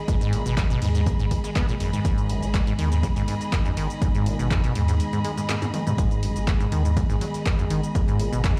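A warbling, lo-fi square-and-triangle pad holds dark G# minor chords with chorus, and a distant, lush bowed string section sits above it from the start; from 0.1 seconds this gritty, hypnotic acid house groove at 122 BPM adds a squelchy, resonant sawtooth acid riff with a filter sweep and dub echo, a thick, saturated triangle sub bass, an up-front overdriven analog kick, punchy overdriven drum-machine handclaps, hi-hat, shaker and toms, and a very quiet, tape-toned sampled breakbeat of hi-hat and snare, with the pad, strings and sub bass pumping to the sidechain, a break at 5.0 seconds, a drum fill at 5.5 seconds, and the whole cut from a longer piece sounding as if played on a big sound system in a bare room.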